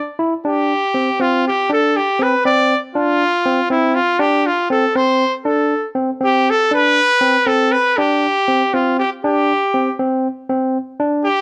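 Intricate and bright, this progressive instrumental excerpt moves in a straight 5/8 over a single Gsus4 harmony, its mixolydian colour giving the line an open, lifted quality. A clear, classical-style trumpet carries the solo melody from E4 to D5, sitting up front yet sounding distant and roomy in its plate reverb. Beneath it, a barky, clean tine electric piano played through a combo amp spins arpeggios between C4 and E4 from 0.2 seconds, the whole set in a moderate studio room.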